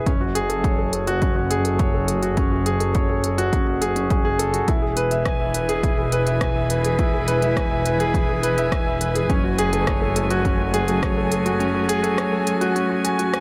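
A straight 4/4 pulse at 104 BPM from a punchy electronic kick, smooth deep house hi-hats and rim clicks underpins this luminous, tender piano-and-strings electronica, where a clear, intimate concert grand with audible action noise and long sustain plays a delayed riff up front over a nasal, earthy bowed double bass section with tube saturation and sidechain pumping, joined at 4.7 seconds by a focused string quartet's sustained chords that pump in the same way, all moving between F#madd9 and E in a small, lightly reverberant room.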